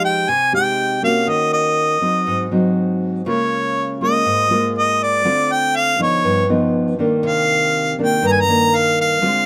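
A warm harmonica carries the jazz-styled solo melody with light vibrato, soft attacks and scooped notes, sitting up front over a thumb-plucked, classical-sounding nylon-string guitar that plays the accompaniment throughout this 9.5-second passage from a longer piece. It is a melancholic, intimate bossa nova in C minor at 121 BPM in straight 4/4, tuned to A4 = 438 Hz, moving through Fm9, Ebm7, Ab7 and Db6 before Dm7 and G7alt resolve to Cm9 at 7.2 seconds. Close, detailed microphones and light reverb keep both instruments present and near.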